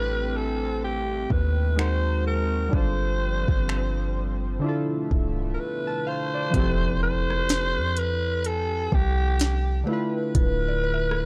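Dark, close and dry, this slice of a longer contemporary R&B track feels moody and late-night, with a lazy swung lilt. A raspy, gritty alto saxophone carries the melody up front, its bright, punchy tone set in a distant, roomy space and touched with vibrato and a digital delay. Beneath it, round analog keys with a filter sweep and chorus comp through rich extended chords, while a shimmering, retro pulse-width pad holds sustained harmony and a deep, boomy 808-style bass anchors the low end. The electronic drum kit arrives at 1.3 seconds with a soft kick, sharp snare, crisp hats, rim clicks and finger snaps, and after a brief silence at 5.6 seconds the music returns at 6.5 seconds as the pad falls away. In its place a very quiet, woody, mellow synth pluck with phaser and chorus adds texture, and a faint electronic impact sounds beneath the closing stretch.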